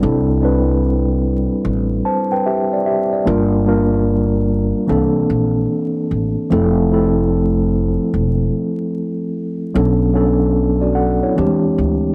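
Swung sixteenths give this dreamy hip hop excerpt its lazy lope, as a mellow, clean tine electric piano, softened by cassette tape and a low-pass filter, drifts through chords from C69 and Gm7 to Fmaj7, Bm9 and E7alt over a woody, growly pizzicato upright bass, both held up front in a dry, gritty recording with light reverb and vinyl crackle.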